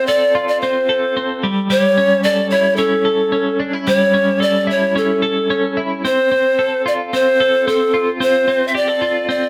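Indie pop in D minor at 111 BPM in a straight 4/4, this excerpt carries a wistful, restless mood across its 9.5 seconds. A breathy pan flute carries the melody between A4 and E5, its bamboo tone close-miked and up front, with a soft attack, an audible chiff and gentle vibrato. Beneath it, a twelve-string electric guitar plays picked arpeggios from G3 to A4, clean and twangy, compressed and treated with tremolo, sitting a little lower in the balance than the flute. The harmony moves from F6/C to A7 at 1.4 seconds and settles on Dm7 at 6.0 seconds. The two parts sound like a band playing live in one room, framed by a moderate studio reverb.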